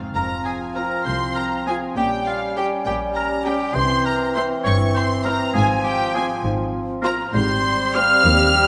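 Sneaky and magical, this short cinematic cue cut from a longer piece moves at 67 BPM in a straight 6/8 in F minor, with a lush, distant violin section carrying the melody alongside a close, rich second violin line, a clear oboe, a very quiet, airy silver flute and a background clarinet, while a dark, punchy French horn section holds sustained chords, a roomy bassoon and a smooth viola section (entering at 0.8 s) fill in the accompaniment, and focused cellos and double basses anchor the bass, all bathed in a wet scoring-stage reverb as the harmony turns from F5 through C to Abmaj7.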